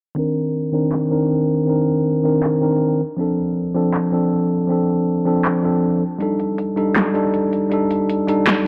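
A bell-like tine electric piano opens this dreamy, emotional future bass excerpt in C dorian at 159 BPM with a half-time feel, its bright, clean chords moving from Cm9 through Dm7 to Ebmaj7#11/G under a filter sweep and digital delay, while an up-front, layered dubstep drum kit enters at 0.9 seconds with a huge snare, metallic hi-hats and handclaps, all set in a lush hall reverb.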